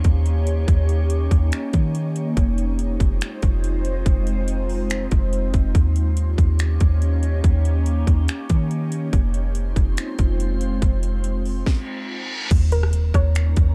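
A half-time 4/4 groove at 142 BPM anchors this hazy, ethereal cloud-rap excerpt, where an overdriven trap kit with a hard-clipped kick, sharp snare and metallic hats sits up front beside a deep, round 808-style bass, while a glassy FM pad drifts through chorus, reverb and phaser over Eb7 and Fm7 chords, electronic impacts and a reverse cymbal mark the opening and a stop at 11.7 seconds, and a soft, warbling pluck with tape echo enters at 12.7 seconds inside a dark digital ambience.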